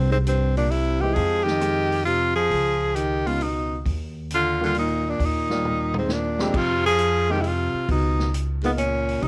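Swinging in a relaxed 3/4 at 134 BPM, this short cut from a longer small-group jazz piece moves with a playful, easygoing bop lilt. A clear, close-miked tenor saxophone carries the melody up front with soft-attacked, vibrato-laden notes, while a baritone saxophone adds a second line lower down with its own vibrato and scooped notes. Pizzicato upright bass sits forward in the mix with a woody, thumpy tone, and a vintage drum kit enters at 0.3 seconds with dark cymbals, a punchy kick and a rolled-off top. A natural-sounding baby grand piano comps from 1.0 seconds, following chords from Fm7 through Db9 to Ebmaj7. A drum fill around 5.6 seconds leads into a new section at 6.5 seconds on Fm and Db7sus2, all set in light reverb and small-room ambience.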